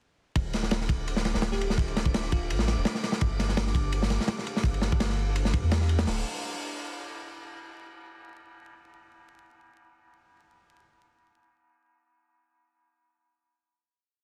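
Drum and bass with a jungle edge at 168 BPM in D dorian, this nostalgic, dark whole piece sets a crunchy, heavily chopped breakbeat kit up front over a round dub sub bass and a warbling, lo-fi tape-like pad from 0.4 s, while a breathy, wind-like tuned noise holds a high note in the background and a bell-like FM electric piano adds short answering phrases at 1.5 s, moving from Dm7 to G7 before settling on a final Dm7 chord at 6.1 s, all beneath vinyl crackle and a dense, heavily limited master.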